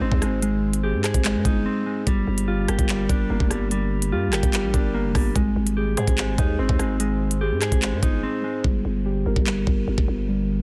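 Drill-style hip hop in G phrygian, this short cut from a longer piece runs at 146 BPM with a half-time feel and a menacing, tense mood. A muted, felt-like synth key carries dark, soft arpeggios through a chorus, low-pass filter and tape echo, while a mellow, clean electric guitar played with the fingers adds subdued accompaniment through its own low-pass filter until 8.6 seconds. Underneath, a growling, buzzy 808-style bass with a saturated, fast-attack tone sits up front, and an electronic drill kit of knocking kick, crisp hi-hats, handclaps and rim clicks drives the groove. The harmony moves between Abmaj7 and Gm7 before settling on Gm for the closing section, where the hi-hats drop out. Brief breaks puncture the beat, and the dry sound is dense and heavily limited in a modern master.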